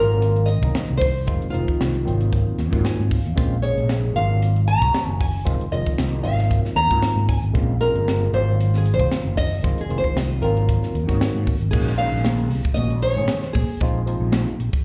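A straight 4/4 groove at 115 BPM drives this slick, nocturnal slice of electric jazz fusion, captured at a live gig through the venue's PA with a light club reverb. A crisp, polished drum kit enters at 0.2 seconds with a punchy kick, a high-tuned snare and dark cymbals across hi-hat and crash, sitting up front beside a growly, amped fretless bass treated with ensemble chorus. Over them a small, fingerpicked nylon-string guitar carries the melody with a slapback echo, while a barky tine electric piano, clean and direct through phaser and slapback echo, supplies the accompaniment and slips in a brief fill at 2.6 seconds. The harmony cycles through Ab13, Fm7 and Bbm9 before shifting at 11.7 seconds to Gb69/Bb and Fm7/Bb. At that change, high-tuned congas played with soft hands join in the background, adding a thin-skinned, bright accent to this passage cut from a longer piece.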